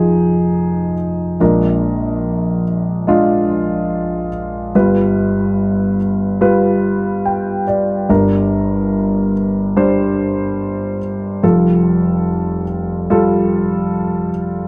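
Folk in a steady four, heartbroken and intimate, carried by a solo grand piano that is mellow and worn, set up front with its action noise plainly audible and ranging from F1 up to G5. Shading through Fm7, Bb7 and G7 before shifting at 8.1 seconds to Gm and Fadd9, the passage is a fragment cut from a longer piece. Light reverb and a dark, warm production keep the sound close and private.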